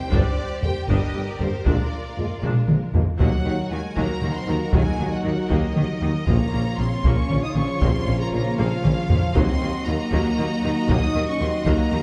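A moderate scoring-stage reverb gives this excerpt of a cinematic, epic orchestral film score its space, with a distant taiko ensemble struck with hard sticks driving a relentless 6/8 pulse at 78 BPM in dotted quarters. Above it, a clear studio violin section carries the lush, vibrato-rich melody up to Eb6, while a second, rich symphonic violin section shapes a focused line beneath. In the background, violas give a smooth, even accompaniment, mellow French horns and dark trombones hold sustained chords from 0.6 s, and an intense, bright double bass section anchors the bass alongside a very quiet cello section and a roomy solo tuba. The harmony moves from Gm to Bb7 before settling into Eb dorian at 3.2 s, and drum fills at 2.4 and 8.6 s push the music forward. A close, dry timpani hit with hard mallets on Bb2 at 6.3 s adds an articulate accent to the epic, driving mood.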